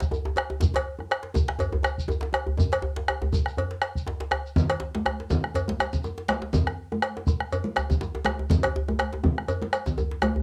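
West African traditional drum ensemble music at 122 BPM in 4/4 with a lightly swung sixteenth feel, festive and earthy, where a round, up-front bombo plays alongside two tight, cracking djembes (one struck with soft hands and saturated, the other with hard hands and close), a metallic, dry cowbell from 0.4 seconds, a grainy, mellow shekere in a small room, and ringing, high-tuned vintage congas entering at 4.6 seconds, all captured as a home cassette recording in a moderate studio ambience cut from a longer piece.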